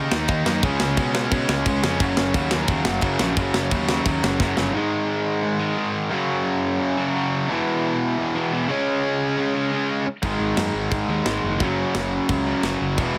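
A straight, driving 4/4 pulse pushes this rowdy, energetic punk rock excerpt, which is cut from a longer piece and shifts into a half-time feel at 4.7 seconds. Three picked electric guitars carry the riff throughout: a tight, bright distorted guitar sits up front, a double-tracked distorted guitar plays in the background, and a biting overdriven guitar adds a warmer edge behind them. A tight metal drum kit, up front in a studio room, hits crash cymbal, kick drum and snare with a tight kick and a medium-tuned snare, closing the opening stretch with a short fill before dropping out. A fuzzy, punchy overdriven electric bass plays through the opening, goes silent, then returns with the kit at 10.2 seconds. A light reverb gives the dense wall of guitars a little space.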